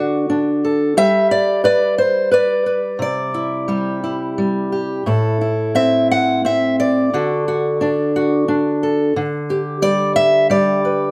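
A rubato 3/4 at 88 BPM carries this hopeful, gentle folk excerpt in D mixolydian, where a lone fingerpicked steel-string acoustic guitar sits up front with light reverb, its concert tone catching the odd finger squeak as it moves through D, G, Cadd9, Am and back to D before settling on G/D near 9.2 seconds.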